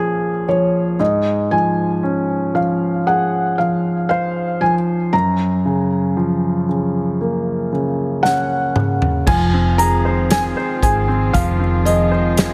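Pop ballad at a slow 58 BPM in 4/4, longing and heartbroken, tuned to A4 = 438 Hz, in which a clear, intimate concert grand with audible action noise and long sustain carries the chords (Bbm7, Dbmaj7/Ab, Gbmaj7) while a soft, boxy felt-muted upright piano sings the melody through a digital delay, before a natural studio drum kit with a punchy kick enters with a fill at 8.2 s, and at 9.3 s, as the harmony moves to Fm7, a round, foam-muted electric bass joins and a dark, nasal chamber string section with reedy gut-string tone adds sustained chords, all set in light reverb in this excerpt from a longer piece.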